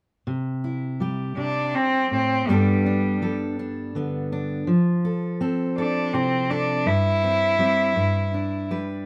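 Heartfelt and nostalgic, this short folk passage in a lilting 6/8 opens at 0.3 seconds with a bright, full-bodied fingerpicked steel-string acoustic guitar carrying the accompaniment through C, Gadd9, Fmaj7, C/G and G. A single bowed cello enters at 1.4 seconds with the melody, its earthy, slightly nasal tone colored by light vibrato, and sits up front alongside the guitar. A touch of light reverb surrounds the pair in this fragment cut from a longer piece.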